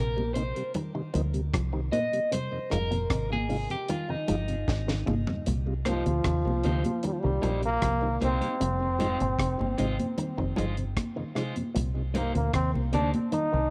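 A laid-back, straight 4/4 groove at 76 BPM anchors this hypnotic roots reggae passage in C minor, cut from a longer piece and moving between Cm7 and Fm7. A deep reggae drum kit with a dry, dark sound, tight kick and high-tuned snare sits alongside a round, punchy, foam-muted fingered bass that is up front. Bright, high-tuned congas played with hard hands, a mellow tonewheel organ on slow rotary speaker with key click, and a twangy envelope-filtered guitar picking arpeggios all sit in the background. A slightly broken-up, compressed guitar adds accompaniment with harmonic tremolo and tape echo, and a guitar solo carries the opening before a drum fill at 4.7 seconds. At 5.9 seconds a distant, roomy trombone with vibrato takes the melody up front, touched with tape echo, over a light small-room ambience.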